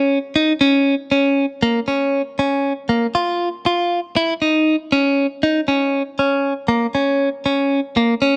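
Progressive instrumental in a driving, intricate 5/4 at 118 BPM, heard as a brief 8.4-second excerpt cut from a longer piece. A lone clean electric guitar, recorded direct and picked, carries the whole passage in the range from A#3 to E#4, its compressed, scooped tone sitting up front and colored by a phaser. The sound is dry and close in a 1970s studio manner, touched by light reverb and digital ambience, with the tuning set slightly sharp at A4 = 441 Hz.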